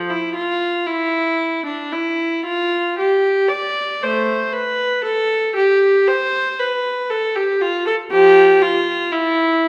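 A single bowed viola carries this brief passage alone from 0.0 to 9.7 s, its rich, reedy gut-string tone colored by a light vibrato in a period style. This classical, baroque-style suite movement moves at 58 BPM in 4/4, and the rubato feel gives the line a gently flexible pulse. The mood is serene yet dance-like, with the single player ranging from F3 up to D5. The viola sits up front while also carrying a distant quality, set in a wet recital hall reverb that lingers for about 1.5 seconds. The passage is cut from a longer work.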